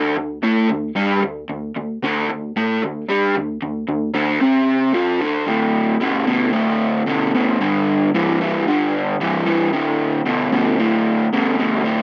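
A lone electric guitar opens this gritty, swaggering rock passage, playing by itself throughout at a straight 113 BPM in 4/4, tuned slightly sharp to A4 = 445 Hz. Its tone is overdriven and lo-fi, picked and double-tracked, and it sits up front in the mix across a range from D2 to C4. The playing rests on a D5 power chord, and the passage shifts into a new section at 5.5 seconds, moving to G5 at 7.6 seconds before returning to D5 at 9.7 seconds. Light reverb colours the guitar, yet the dry, close, 1970s-style studio sound keeps it raw and immediate, like a garage guitarist caught mid-take.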